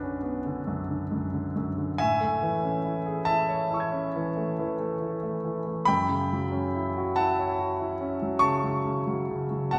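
Flowing in 9/8 with free, rubato timing, this short passage of impressionist solo piano drifts at a slow, unhurried pace. The mood is luminous yet hazy, carried by a single concert grand that is clear and polished, with a deep bass and long sustain. The instrument sits up front and intimate, close enough that the noise of its action can be heard, while it ranges from B1 up to G#6. The harmony glides from Bm9 to Amaj7 at 2.0 seconds and settles on F#m7 at 5.9 seconds. A lush church reverb with a long tail surrounds the playing and gives the close sound a spacious, resonant setting. Cut from a longer piece, the passage lasts just under 10 seconds.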